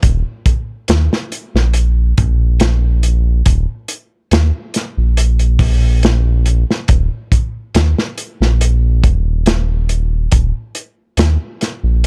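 Trip hop at 70 BPM in 4/4, this hypnotic, smoky cut from a longer piece rides a gently swung sixteenth-note feel. A round analog bass holds the low end from Eb1 to Eb2 across the full 12.1 seconds, its deep, evolving tone blending sawtooth, sine and triangle shapes with a fast attack, long sustain and tube saturation. Alongside it, a crunchy breakbeat drum kit of hi-hat, kick and snare plays throughout, sounding acoustic and gritty, as if captured in a small room, with a tight kick, a medium-tuned snare and a rolled-off top. Both parts sit up front in a dark production with little reverb.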